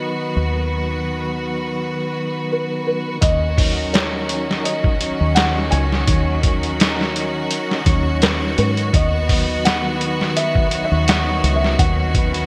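Trip hop in Eb minor at 84 BPM with a light sixteenth-note swing, this melancholic, cinematic excerpt opens on a felt-muted upright piano carrying the melody, its boxy, intimate tone touched with audible action noise, subtle chorus and tape echo. Beneath it a mellow tonewheel organ adds accompaniment through a slow rotary speaker and harmonic tremolo, with a hint of key click, while a clear symphonic string section holds bowed chords with light vibrato and a smooth top. A deep dub fingered electric bass, round and foam-muted, anchors the low end from the start. At 3.2 seconds a compressed, pitched-down sampler-style drum kit arrives up front, pairing a thumpy kick and medium-tuned snare with hi-hat, all muffled and tape-warm under gated reverb, as the harmony moves from B over D# to Ebm7 and on to B at 8.9 seconds. The whole sits in a lush hall reverb with a bright 1980s-style digital sheen.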